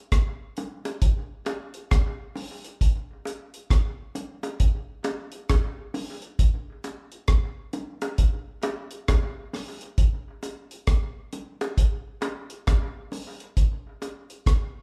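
A light reverb gives this short reggae excerpt the feel of a band playing live together in one room. At a slow 67 BPM in 4/4 with a swung sixteenth-note feel, the mood is hypnotic and serious. A deep acoustic drum kit sits up front, dry, dark and smooth with a rolled-off top, its tight kick, hi-hat and rim click carrying the groove from 0.1 seconds to 14.7 seconds. Bongos come in at 0.6 seconds, mixed well below the kit, their high-tuned, hard-handed hits sounding tight and small-roomed through an analog delay. The whole passage holds to a single section, cut from a longer piece.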